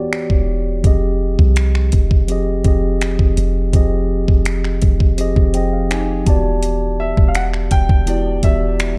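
A dark, close production with little reverb frames this sensual, longing contemporary R&B excerpt in F minor at 83 BPM, built on a mellow tine electric piano that moves through Em9 and Fm9 chords and adds a fill between 5.2 and 6.6 seconds. Up front sits a smooth, tape-warm drum kit of knocking kick, metallic hi-hats and finger snaps, joined by a deep, boomy 808-style bass from 0.3 seconds. A faint, inharmonic FM chime rings with chorus and delay in the background, and a natural-toned baby grand piano enters at 7.0 seconds with a short delayed melody.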